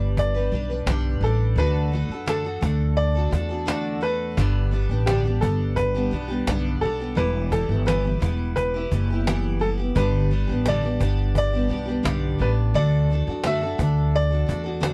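A growly, thumpy upright bass sits up front in this carefree, heartfelt acoustic pop piece, its pizzicato steel strings giving a warm, woody low end throughout the 14.9-second cut from a longer piece. A full-bodied jumbo steel-string acoustic guitar, picked and double-tracked, also sits forward in the mix and carries the accompaniment, moving through G, D, Em and back in a straight 4/4 feel. Above it, a warm upright piano with a boxy, short-sustain tone plays the melody in a fairly narrow upper range. The cajon keeps time with a compressed, saturated, woody sound and faint snares. The whole recording is dry and close, with the intimate feel of a 1970s studio session.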